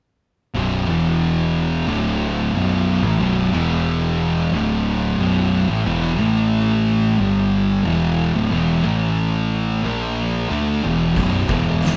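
Stoner and doom metal, brooding and ominous, cut from a longer piece: two thick, distorted fuzz guitars sit up front from about 0.5 seconds, one dark and one warm, grinding through a riff of power chords that moves among B5, E5, D5, A5, G5 and A#5. An overdriven fuzz bass, direct and amped, holds down the low end beneath them. At 11.2 seconds an oversized, low-tuned acoustic drum kit comes in with a punchy kick, fat snare and hi-hat, its gritty, saturated sound filling a bright stone room, while the whole band plays live together in one room under moderate studio reverb.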